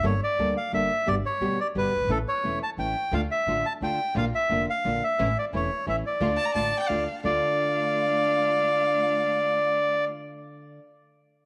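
A reedy bandoneon carries the melody up front, with a boxy small-room character, in this passionate, melancholic tango excerpt set in D harmonic minor. The pulse sits at 175 BPM in 3/4, but the feel is rubato and free-flowing. Underneath, a dark, fingerpicked classical nylon-string guitar supplies the accompaniment, complete with audible finger squeak, while a woody, thumpy pizzicato upright bass on steel strings anchors the low end until 7.4 seconds. From 3.1 seconds, a lush symphonic string section adds soft-attack stabs from the background, and at 6.4 seconds a single bowed violin enters with a rich, focused second line sung with vibrato. The harmony moves from Gmadd9 through G and A to Dm, Bb, A and back to Dm, all bathed in a moderate plate reverb.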